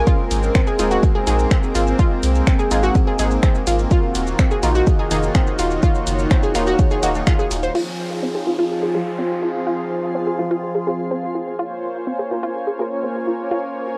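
Melodic techno at 125 BPM in F phrygian, hypnotic and cinematic, cut from a longer piece and heard as a cassette home recording in a small booth: a punchy, overdriven kick sits up front with a round, deep analog bass and a tape-warm deep house kit of snaps, shaker, hi-hat, ride and crash, all dropping out between 7.4 and 7.8 s after an accent at 7.3 s, while a detuned sawtooth pad holds sustained chords under bright chorused pluck arpeggios with tape echo, background brassy stabs and a blurred, evolving granular cloud pad, a faint downlifter easing the shift from Abadd9 through Fm to Bbm7.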